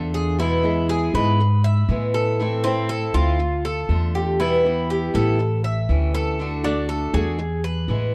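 Warm and sultry, this short Latin excerpt moves in a straight 4/4, built on a picked old ladder-braced acoustic guitar with a dark, boxy tone from aged strings, a pizzicato upright bass with a thumpy, woody body, and a Cuban tres playing arpeggios on metallic double strings touched with tape echo. All three sit up front from 0.0 to 8.1 seconds as the harmony runs E, Am, Dm, Em, A7, D and back to E. Light reverb and a dark, warm production frame the trio, and the excerpt is cut from a longer piece.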